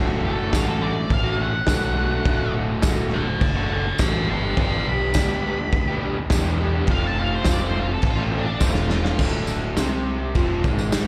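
Rowdy and raw, this garage rock excerpt runs at 104 BPM in a straight 4/4, heard as a live gig through the venue's PA with recital hall reverb. A lo-fi, double-tracked overdriven guitar riff sits up front with slapback echo over a round, punchy fuzz bass. At 0.5 seconds a garage drum kit with a punchy kick, medium-tuned snare, crash cymbal and rolled-off top enters together with a jingly, close tambourine. A dark octave-fuzz lead guitar carries the melody with distortion and slapback echo until 9.2 seconds, where a drum fill hands off from chords moving D, G and F to a closing Dm7b5.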